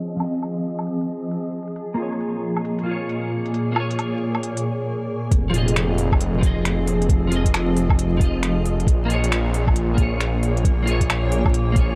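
Future garage at 135 BPM in F minor with a swung 16th-note feel, this nocturnal, melancholic clip opens under a filter sweep and vinyl crackle as a dark, scooped clean electric guitar with chorus, tape echo and sidechain pumping picks through Fm7 and Bbm7 over a blurred, bright granular cloud pad, while an overdriven organic electronic kit of finger snaps, crisp hi-hat and woodblock ticks along, until at 5.3 seconds a menacing, saturated detuned saw bass and a muffled, thumpy electronic kick arrive to anchor the low end.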